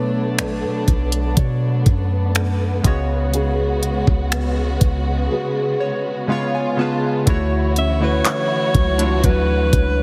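Heavily compressed with a radio-like sheen, this slow contemporary R&B fragment sits in light reverb and small-room ambience, moving at 61 BPM in a straight 4/4 with a sensual, longing mood. Warm analog keys with a detuned, wave-folded edge, chorus and a filter sweep carry the accompaniment, while a dark, lush studio string section holds bowed chords with vibrato and portamento, pumping under sidechain. A thumb-plucked nylon-string guitar with fresh strings traces classical-style arpeggios through tape echo, and a deep, round 808-style bass sits up front with a fast attack and a decaying tail. The electronic drum kit comes in at 0.4 seconds with a knocking kick, smooth hi-hat, finger snaps and handclaps. The harmony moves from Bm9 through C#7sus4 and C#7 into Dmaj9, and a synth keys fill arrives at 5.3 seconds. At 7.8 seconds a mellow alto saxophone steps forward as a jazz-style solo, its subtone and scooped notes shaded with vibrato.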